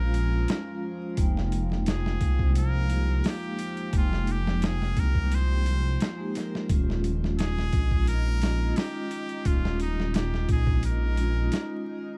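A boom bap sampler-style drum kit, pitched down, compressed and thumpy, sits up front with a dark detuned saw bass that rumbles and beats beneath it, setting a brooding, hypnotic trip hop groove at 87 BPM in a straight 4/4, all under a layer of vinyl crackle. A close-miked vibraphone rings out a metallic accompaniment with harmonic tremolo, while a deep ambient pad with chorus, built-in reverb and 12-bit sampler grit hangs mellow in the background, moving from Eb7sus4 to Fm11 at 1.2 seconds and back at 6.7 seconds. Over this, a nasal trumpet with straight mute carries the melody with vibrato and tape echo until 11.8 seconds, in this short passage cut from a longer piece.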